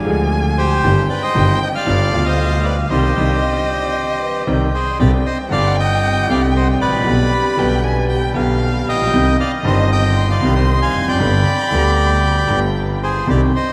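A reedy, bright bandoneon carries the melody up front in this dramatic, passionate tango excerpt at 116 BPM with a rubato feel in C harmonic minor, over a vintage concert grand piano with deep bass and a rich, bowed double bass, while a distant violin with vibrato and portamento sings a second line beside a very quiet, metallic vibraphone that rings until 8.7 seconds, the band striking an accent from 2.9 to 5.0 seconds in a vast, echoing cathedral space.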